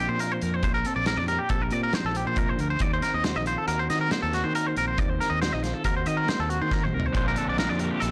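A blown-out, overdriven recording with light reverb and studio ambience frames this wistful, bright excerpt of math rock and midwest emo in 5/4 at 138 BPM in Bb major, where a twangy, compressed clean guitar plays arpeggios with tremolo up front over a dark, fingered guitar accompaniment and a growling fingered bass with overdrive and transformer saturation, while a loose indie drum kit with a punchy kick and a pumping room sound enters at 0.2 seconds and plays a fill at 6.7 seconds, and a raw, double-tracked garage guitar riff with spring reverb arrives at 7.1 seconds as the chords move from Bb69 to Ebm6 and back.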